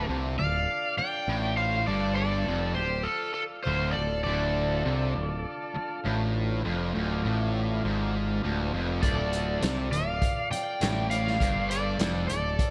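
A big arena sound with a lush hall reverb frames this heavy, brooding blues rock and southern rock excerpt, where a bright, overdriven slide guitar played with fingerpicks carries the melody up front. Beneath it, a double-tracked fuzz guitar riff and a dark, round, growling bass sit up front, while a nasal lead guitar through a parked wah adds a second line with slapback echo, and a smooth tonewheel organ holds clean chords in the background with key click and slow rotary speaker. A muffled, lo-fi vintage drum kit with a tight kick and rolled-off top enters at 9.0 seconds.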